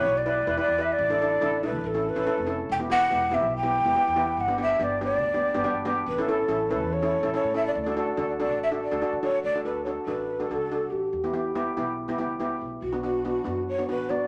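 A breathy, hollow shakuhachi carries the melody up front with a soft attack and straight tone, giving this carefree, festive calypso excerpt in straight 4/4 an unexpected bamboo voice. A close-miked, dry steel pan played with medium rubber sticks supplies shimmering, metallic accompaniment just beneath it, while a quieter pizzicato upright bass adds a woody, growly low end. The harmony moves through chords such as Em7, G, A and D before shifting into a new section at 9.4 seconds, all heard in a studio room with a wet reverb.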